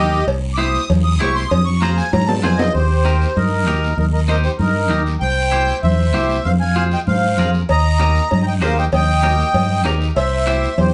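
Heard from further back in a reverberant studio with a dulled top end, this joyful, sunny cumbia sets a sweet, reedy lead accordion with light tremolo tuning up front over a warm fingered electric bass, a bright, twangy guitar with subtle chorus, a raspy guiro and soft-handed, high-tuned congas in the background, and ringing metal-shell cowbell and timbales that drop out at 2.7 seconds after a drum fill and return at 7.7 seconds, while a full, mellow second accordion joins at 2.8 seconds.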